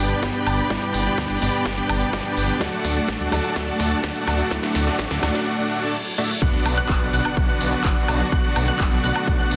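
A straight 4/4 pulse at 126 BPM drives this uplifting, euphoric festival progressive house passage, with a punchy, overdriven electronic kick and a big-room kit of huge snare, handclaps, hi-hat, woodblock and crash cymbal carried on studio reverb, while a menacing, beating detuned saw bass and a huge, thick supersaw riff, filtered and echoed up front, pump against the beat. Behind them a boxy, mellow grand piano accompanies while an expressive chamber string section holds dark chords over G and D through the build-up, with a very quiet riser, reverse cymbal and impact from 3.2 seconds. At the drop at 6.4 seconds the harmony moves to Bm as the piano stops and a lush, bright unison pluck with phaser and echo enters in the background, all under a dense, heavily limited modern master.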